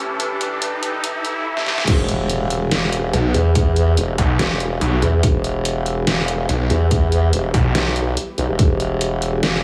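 Menacing and heavy, this half-time wobble dubstep in E minor at 143 BPM opens on a brief build-up, where a soft, felt-muted upright piano phrase with dub echo sits in the background over a lush, detuned pad and a riser and swell, with a drum fill leading into the drop at 1.9 seconds. There an impact lands as a punchy electronic kick and the up-front dubstep kit with its deep snare, crash and hi-hat drive a swung groove, while a formant-sweep wobble bass with chorus and overdrive carries the low end. From 3.1 to 7.7 seconds a snarling, bright, distorted saw bass growls alongside it, all in a dry mix with small room ambience.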